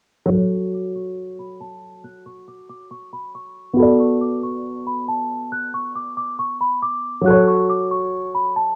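A half-time 4/4 groove at 138 BPM gives this hip hop excerpt in F# minor a tense, ominous weight, moving from F#m to Bm7 and back to F#m. A baby grand piano carries the accompaniment with a mellow, intimate tone and audible action noise, while a bell-like, delicate celesta sings the melody above it; both sit up front with a low-pass filter from 0.3 to 8.8 s. A filter sweep spans the whole passage, and light reverb and cassette tape colour lend it the rough feel of a home demo.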